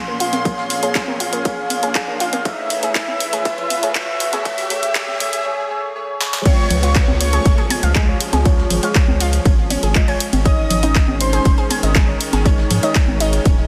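A thick, detuned unison lead with vibrato, dark woody bowed strings, a sidechain-pumped analog pluck with chorus and delay, and a soft phased chord stab climb through filter sweeps over a background riser and downlifter, punchy layered house drums with handclaps, a gritty breakbeat kit, tape-warm congas and an up-front electronic kick, until a short break from 5.5 seconds and a drum fill at 6.2 seconds give way at 6.5 seconds to a euphoric, uplifting progressive house drop where a smooth background supersaw and a round, wave-folded analog bass with tube saturation join, all bathed in lush hall reverb under a dense, heavily limited master.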